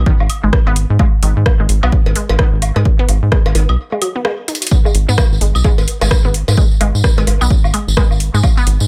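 A swung 129 BPM minimal techno groove in G# minor, sparse and clinical, built on a punchy, up-front electronic kick and a rubbery, hollow square bass that pumps against it, while a squelchy, bright blip pluck with phaser and dub echo warbles above, a garage kit adds overdriven metallic hats and rim clicks, tape-echoed woodblock and cowbell tick in the background, and after a break at 3.8 seconds and a drum fill at 4.5 seconds a jingly tambourine joins at 4.7 seconds in this short excerpt.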